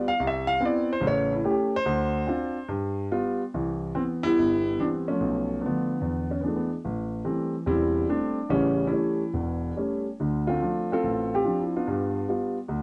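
A warm, natural grand piano sits up front in this short solo jazz passage, cut from a longer piece, playing on its own across 0.0 to 12.8 seconds and ranging from deep E1 up to F5. The mood is relaxed and swinging, with a loose rubato feel laid over swung eighth notes in 4/4. The harmony opens with a brief turnaround of Cmaj7, A7, Dm7 and G7 before a longer second section begins at 3.5 seconds, moving through Cmaj7, Bm7b5, E7 and Am7, then back through A7, Dm7 and G7. The tuning sits slightly sharp of standard, at A4 = 445 Hz. A moderate studio reverb lends the piano a sense of room while it stays close and up front.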